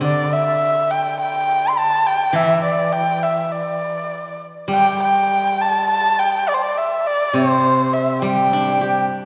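This short excerpt of Chinese traditional chamber music moves in a free, rubato feel over a nominal 4/4 at 103 BPM, giving it a pastoral, graceful character. A single bowed erhu carries the melody up front from C5 to C6, its dark, nasal, woody voice shaded with vibrato and portamento. Beneath it, a steel-string zither played with fingerpicks supplies accompaniment from C3 to G4, its mellow, silvery notes ringing clearly close to the listener. The erhu falls silent at 9.0 seconds while the zither rings on until 9.3 seconds. A lush concert-hall reverb with a 2.1-second decay surrounds both instruments, lending the intimate duo a spacious, resonant setting.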